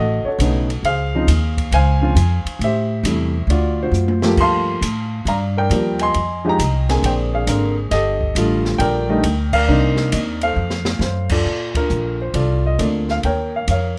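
Jazz piano trio swinging at 136 BPM in Bb major, relaxed and playful, in a passage cut from a longer piece. An intimate baby grand carries the melody up front with its action noise audible, while a woody, thumpy pizzicato upright bass on steel strings sits close beside it. A smooth open drum kit with dark cymbals, a high-tuned snare and a boomy kick joins at 0.4 seconds and drops in a couple of fills, while the whole trio lands a pair of accents together, all under light reverb.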